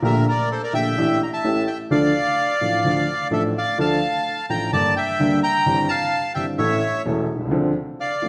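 Tango fragment of 8.3 seconds in D minor at 128 BPM with a sultry, passionate rubato feel, in which an up-front, reedy bandoneon carries the melody over a warm baby grand piano whose open, long-sustaining accompaniment moves from Gmadd9/Bb through A7 to Dm and on to a Dm7 close, all set in the wet reverb of a recital hall.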